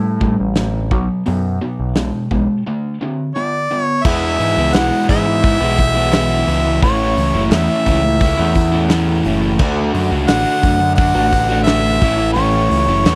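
Two picked electric guitars open a sunny, confident classic rock groove at 86 BPM in E mixolydian: one crunchy and overdriven, the other bright, distorted and compressed behind it. They play riffs over A5, B5 and D5 power chords, with a growling, overdriven bass up front and a punchy, big-room acoustic drum kit driving with kick, snare, hi-hat and crash. At 3.3 seconds a warm, pop-style harmonica takes the solo melody up front, and from 4 seconds the chords move through E, A and D. From 4.7 seconds a crisp group handclap sits very quietly in the dry, close 1970s-style small-room sound of this excerpt.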